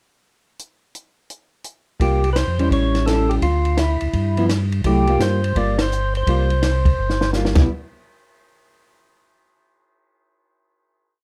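A lightly overdriven, percussive tonewheel organ carries a motif-based melody in sentence-like phrases through a slow rotary speaker and plate reverb, giving this short, bluesy, greasy soul jazz organ trio piece its fat voice at a swung 169 BPM in 4/4. A compact cocktail drum kit with dark cymbals, a high-tuned snare and a punchy kick plays the pickup bar alone from 0.6 seconds. At 2.0 seconds the organ enters together with a mellow second organ with key click and vibrato holding a round two-feel bass line, and a hollow-body archtop guitar with clean, syncopated three- and four-note chord comping. A band accent lands at 5.7 seconds, and a drum fill from 7.0 seconds runs beneath the closing Cmaj7 into the final hit, all within a dark, warm mix touched with light reverb.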